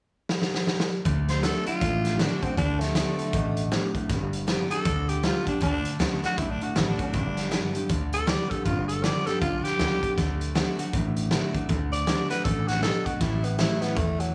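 A swung rockabilly shuffle at 158 BPM in D major opens with a drum fill on the raw garage kit at 0.3 seconds, its punchy kick, medium-tuned snare and hi-hat sounding saturated and up front in a pumping small room. At 1.1 seconds the band lands together: a thumpy upright bass with woody, dark gut strings, a bright jumbo steel-string acoustic guitar picking full-bodied chords with audible finger squeak, and a twangy electric guitar riff through a small old amp, slightly broken-up, lo-fi and warbling with pitch drift in the background. A raspy, growling tenor saxophone takes the melody from 1.3 seconds, breathy and present with light vibrato and a digital delay trailing its lines. The chords move between D and G before turning to A near the end, and the mood is upbeat and rowdy throughout this fragment of a longer piece, set in a small room with light reverb.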